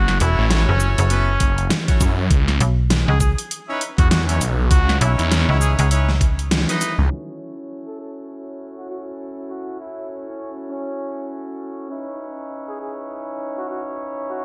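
A bright, 1980s-style digital sheen and a lush hall reverb frame this swaggering, funky glitch hop excerpt at 100 BPM in F# dorian, swung on the sixteenths and moving between F#m7 and C#m9. A warm, classical-style solo trumpet carries the melody over pop-style horn-section stabs with 12-bit sampler grit, sidechain pumping and delay, while a swirling, phased saw bass and a snappy, metallic FM slap bass hold the low end through the first half. A dubstep kit with a huge snare runs throughout, joined by a knocking, overdriven electronic kick that drops out as the band hits an accent at 6.5 s, and a filter sweep shapes the second half from 7.1 s.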